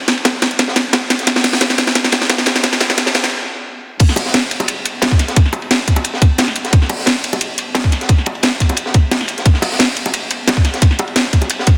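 A dense, heavily limited master places overdriven electronic drums up front inside a moderate concert-hall reverb, giving this drum and bass cut from a longer piece a lush, rolling character in straight 4/4. A tight, overdriven electronic kick anchors the groove alongside a layered drum and bass kit with a cracking snare, bright hats and crash cymbal. Beneath them sits a crunchy breakbeat kit in the background, acoustic and gritty, with dark cymbals, a high-tuned snare and a rolled-off top that lends a saturated, smooth undertone. The opening build-up carries a drum fill until 3.3 seconds, then a brief stop clears the way for the drop at 4.0 seconds. Once the drop hits, tight, high-tuned bongos played with hard hands join from 4.2 seconds, adding a small-room acoustic layer deep in the mix.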